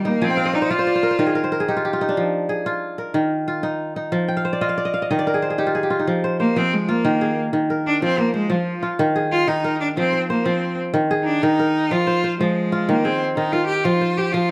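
Reflective and hypnotic, this West African traditional piece in a straight 12/8 is built on a crisp, ringing kora, fingerpicked in steady arpeggios and filling out the opening section. A single bowed cello, bright and focused with vibrato and a plate reverb, sounds briefly at the start, then returns at 6.4 seconds to carry the melody as a solo. The two sit up front in a moderate studio room, in a passage taken from a longer piece.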